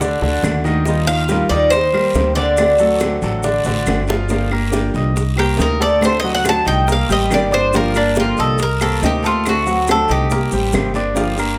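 An excerpt of Cuban son and guajira opens with flamenco guitar, bright concert grand piano, upright bass and light percussion all sounding together at 140 BPM in a straight 4/4, carrying a warm, nostalgic mood. The upright bass sits up front, pizzicato and thumpy with a dark, woody tone, while the piano spins brilliant, polished arpeggios with long sustain and the fingerpicked flamenco guitar fills in the accompaniment beneath. In the background, tight high-tuned bongos, a raspy guiro and grainy, mellow maracas keep time, joined at 0.4 seconds by distant, woody claves. The Cuban tres enters at 1.1 seconds, picked and metallic with its doubled strings, and after a drum fill it takes a solo from 4.3 seconds over a harmony built on Gm7, Cm9 and D7. A moderate large-studio reverb lends the whole ensemble a roomy finish.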